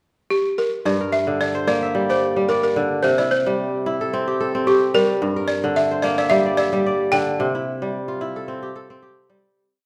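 A lightly swung 4/4 groove carries this short, hypnotic and reflective piece of West African string and xylophone music, which opens with the woody, buzzing balafon at 0.3 seconds playing a motif-based melody of call phrases with rubber mallets, its dry, close-miked tone sitting full and up front. The kora joins at 0.9 seconds with a bright, ringing, fingerpicked ostinato of crisp interlocking arpeggios that moves between Gm and C, while a moderate recital-hall reverb surrounds the pair before the fade-out that begins at 7.4 seconds.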